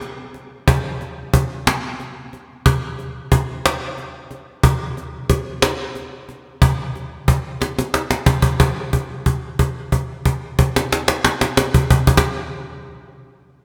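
Anthemic yet bittersweet, this rock passage in 6/8 is carried entirely by a woody, acoustic cajon placed up front, its faint snares and small-room character lending intimacy. A lush hall reverb and big arena sound surround the recording. A drum fill at 7.6 seconds leads into a held note that rings from 8.6 seconds to 12.2 seconds, just before the cajon stops at 12.3 seconds.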